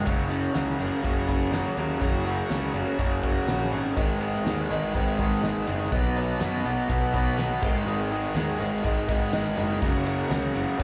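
A straight 4/4 classic rock groove, swaggering and gritty, heard live through a club PA with light room reverb in this short cut. Up front, a raw, double-tracked garage guitar picks an overdriven riff with slapback echo over a round, punchy fuzz bass and a damped 70s kit with a fat snare and tight kick. Sitting in the background, a shouting tonewheel organ holds sustained chords with key click, light overdrive and a slow rotary speaker.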